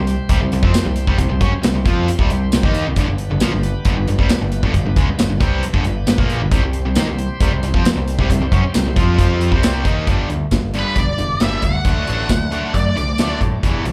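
Classic rock with a sunny, swaggering feel, caught live through a club PA, opens on a pair of bright, overdriven guitar riffs with slapback echo, a growling, round bass up front and a big acoustic kit with punchy kick, medium-tuned snare, hi-hat and tambourine. A very quiet tonewheel organ with key click and slow rotary speaker holds sustained chords until 10.0 seconds. At 10.8 seconds a dark octave-fuzz lead guitar, colored with wah, plate reverb and tape echo, steps forward with a short melody over the new section.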